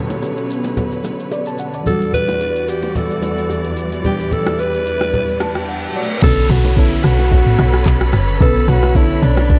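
A deep, soulful amapiano excerpt in B minor at 110 BPM opens on a lush, dreamy FM electric piano with a soft pad layer, colored by chorus and phaser, over a symphonic string section holding bowed, vibrato-rich chords on Bm9 as a downlifter sinks into the background. From 0.1 seconds a smooth, electronic R&B drum kit with a soft kick, handclaps, rim clicks, shaker, toms and crash cymbal settles into a lightly swung groove, joined by ringing acoustic bongos and congas set back in a live room. At 1.9 seconds the harmony moves to Em9 and a breathy, raspy alto saxophone steps up front with a pop-style solo line, its gritty edge smoothed on top and trailed by digital delay. The electric piano plays a fill and a reverse cymbal rises before the chords return to Bm9, and at 6.2 seconds a woody, punchy log drum bass arrives prominently with a fast, decaying attack. Light reverb and a dark, warm production give the passage its deep, soulful feel.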